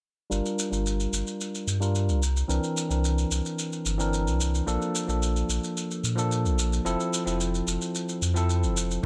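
A straight 4/4 pulse at 110 BPM is kept by a layered electronic shaker with a tape-warm, small-room character, setting a relaxed sunset chillout mood in G dorian from 0.3 s in this fragment of a longer piece. Up front, a round, mellow sine sub bass carries the low end while a bright, bell-like tine electric piano plays the accompaniment through a low-pass filter and delay, both parts shaped by filter sweeps. The chords move from Gm7 to C9, Bbmaj7 and Fmaj7, all set in light digital reverb.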